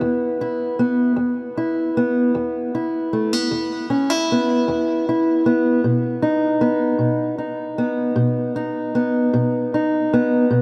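A dark, boxy fingerpicked parlour steel-string acoustic guitar with fresh strings and audible finger squeak sits up front alone through this soulful, gritty slow blues fragment in 12/8 at 52 BPM in dotted quarters, tuned to A4 = 437 Hz and spanning E2 to E4, moving from an E5 chord to B at 5.9 s before the cut at 10.6 s, its tape echo drifting into a huge, dreamy ambient reverb with a 5.6-second tail.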